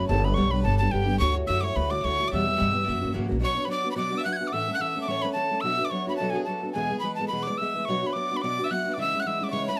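A mellow wooden whistle carries the melody from the first moment, its airy, chiffy tone sitting up front in this spirited Celtic reel, cut from a longer piece. A bright, fingerpicked steel-string acoustic guitar drives the accompaniment at a brisk 216 BPM with a light swing. Meanwhile a ringing, thumb-plucked harp in the background and a rich, earthy fiddle with light vibrato share a second line beneath the tune. A woody pizzicato upright bass anchors the opening passage over chords moving from G through Dadd9 and Em to F#7, then drops out at 3.4 s. From there the music settles into B dorian, and the remaining instruments carry a dark, lively second section over Bm, A, E and C#m until 9.8 s. Close, detailed microphones and a touch of light reverb give the recording an intimate, present sound.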